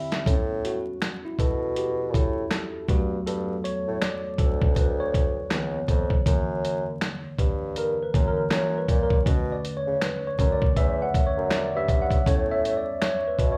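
A worn, slightly out-of-tune tine electric piano with lush chorus opens on a fill and then solos from 0.3 seconds through this soulful, warm neo-soul and R&B excerpt at 80 BPM with a swung 16th-note feel, over a gritty, compressed sampler-style drum kit of finger snaps, hi-hat, medium-tuned snare and thumpy kick, and a mellow bassoon carrying the bass line with light vibrato in a classical style, as the chords move from A9 through Gmaj9, C#13, F#7b13, F#7b9 and Bm7 back to A9, all heard like a live gig through a venue's PA with club reverb and vinyl crackle.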